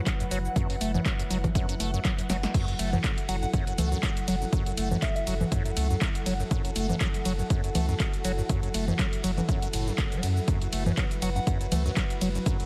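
A warbling, nostalgic pad of detuned sawtooth and triangle tones opens this raw, driving acid house excerpt on a dark minor-seventh chord, joined by an ethereal, airy pad of high unison voices sitting in the background, both pumping with sidechain compression and blurred by chorus and built-in reverb. Almost at once a squelchy, resonant square-wave acid bass takes up the riff, its filter sweeping through phaser, tube saturation and tape echo, while a round sine sub bass pumps beneath it. An up-front, punchy electronic kick anchors the swung groove, and a tape-warm analog drum machine adds snare, handclaps, hi-hat, ride, crash, congas and shaker, with a short room on the snare, clap and hats and a fill at 2.3 seconds. At 3.3 seconds a soft, pure FM bell drifts in the background with chorus, phaser and digital delay, returning briefly at 11.2 seconds. The whole mix has a light digital ambience and a heavily compressed, radio-like sound.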